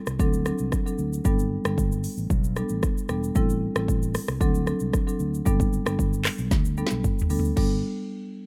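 An up-front electronic afro-pop kit with a deep kick, woody snare, crisp hats, handclaps, shaker, rim clicks, toms and crash opens this breezy, joyful afrobeats excerpt at 114 BPM in G major alongside a punchy, amped fingered electric bass, as a full, close-miked rosewood marimba played with medium mallets joins at 0.2 s over a D7, Gadd9, Am7 progression before a drum fill at 6.5 s, all in a dry, rough home-demo mix.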